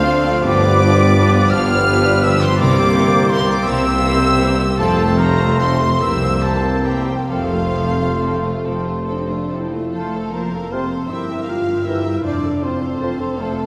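Classical slow romantic movement for symphony orchestra in 6/8 with free rubato, warm and serene, cut from a longer piece. A rich, intense violin section carries the vibrato-laden melody over a second, smoother violin section, with an airy, hollow flute, a present oboe and a very quiet clarinet adding supporting lines. Bassoon, distant violas and ringing harp arpeggios fill the middle, mellow horns and very quiet trombones hold sustained chords, vintage-toned trumpets add mellow stabs, and cellos with expressive portamento join double basses and a close-miked tuba on the bass line, all bathed in a long church reverb, with the trombones and trumpets dropping out at 9.6 s and the tuba at 9.8 s.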